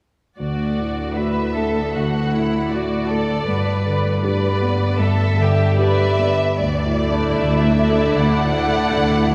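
A rubato 4/4 pulse around 78 BPM carries this uplifting, hopeful cinematic film score in D major, a short excerpt from a longer piece, set in a long cathedral reverb. A concert grand piano with deep bass plays accompaniment from the start, beneath a distant, even violin section on a second line and an intense cello section holding the bass, as the harmony moves from Dadd9 to G and back. At 5.8 seconds a second violin section enters with a warm, soft-attacked, expressive melody sung with vibrato, followed at 6.6 seconds by a woody double bass section and at 7.0 seconds by a smooth viola section in the background, each bowed and lush.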